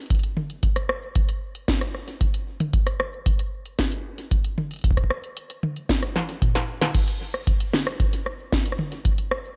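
A dark, digitally ambient sound frames this melancholic, eerie IDM fragment at 114 BPM in a straight 4/4, where a deep, overdriven analog-style electronic kick sits up front in a small room alongside a tape-warm industrial drum kit of clanging snare, smooth hi-hats, rim clicks, toms and crash cymbal treated with digital delay, with a drum fill at 6.2 seconds before the pattern returns.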